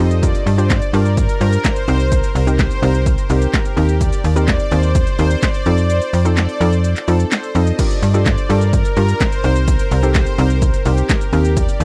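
A straight 4/4 groove drives this confident, energetic dance-pop excerpt, which is cut from a longer piece and stays in drop mode throughout. A punchy analog drum machine sits up front with kick, snare, handclaps, hi-hat, shaker and crash cymbal, and a short room colours its snare, clap and hats. The kick drops out from 5.9 to 7.8 seconds before the passage begins again at 7.8 seconds. Underneath, a snappy FM bass with a metallic, digital attack pumps with sidechain, while a hollow, bouncy square-wave pluck, also sidechained and treated with chorus, adds a noise layer and a sub octave to its detuned, mellow tone. Over the top, a lush supersaw pad carries the melody with a slow attack and long release in bright, sustained lines. The dry, close sound recalls a 1970s studio, and the chords move through Gm7, Cm7, Eb6 and F7.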